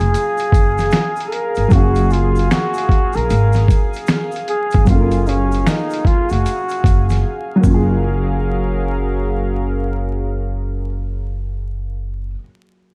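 A breathy, vintage-toned flugelhorn sings a jazz-style solo with vibrato and scooped notes over a dark, worn upright piano, a smooth sawtooth pad with chorus and soft attack, growly pizzicato upright bass, and a gritty, overdriven sampler-style drum kit with a thumpy kick, snare, hi-hat and finger snaps. This is a dreamy, cosy lo-fi hip hop cut in F# major at 76 BPM with swung 16ths, opening on an F#maj9 chord, while a grainy tube shaker sits distant in the background. The drums fall silent at 7.2 s and the flugelhorn stops at 7.5 s. The shaker lingers briefly, and the slightly detuned, boxy piano, woody bass and pad carry on through a dusky mix with vinyl crackle and small room reverb.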